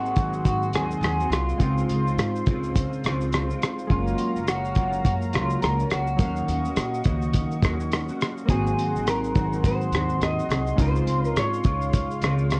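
A muffled, cloth-damped drum kit with a tight kick, hi-hat, rim click and shaker carries gritty sampler saturation up front at a 104 BPM swung 4/4 beneath a woody pizzicato upright bass, a clean picked electric guitar with ensemble chorus and vibrato, faint glossy pulse-wave synth keys and a smooth, detuned analog pad with slow attack, while a slightly broken-up, compressed guitar through a small old amp carries the melody with analog chorus and tape echo over Ab7, Dbmaj7, Gbmaj7 and Ebm7 chords, all soaked in warbling cassette drift and light reverb in this mellow, lonely bedroom-pop excerpt.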